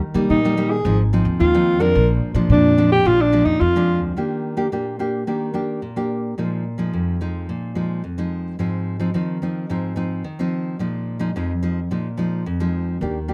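A breathy, mellow alto saxophone sits up front with jazz-style vibrato and scooped notes, its distant, roomy plate reverb lending a soft glow to a joyful, lively samba and choro fragment cut from a longer piece. Fingerpicked nylon-string guitar carries the deep classical accompaniment throughout, joined by woody pizzicato upright bass until the saxophone and bass drop out near 4.0 s. The guitar then plays alone until the bass briefly reappears at 13.0 s, all captured in a rough home-demo mix with moderate room ambience.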